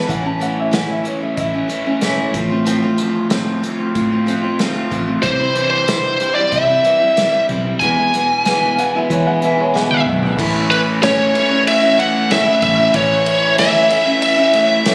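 Folk rock and heartland rock in a hopeful, warm mood, built on a dark, finger-squeaking steel-string acoustic guitar, a crunchy double-tracked overdriven guitar riff with phaser, a round foam-muted electric bass and an unplugged drum kit with bundle sticks, a medium-tuned snare and a punchy kick. A worn, woody, slightly detuned upright piano adds a brief second line, and from 5.2 s a distorted lead guitar carries the bluesy melody up front through analog delay, while a clean, very quiet tonewheel organ with key click holds chords from 10.1 s, during a drum fill. The phone-in-the-room sound sits in moderate large studio reverb with compression, cut from a longer piece.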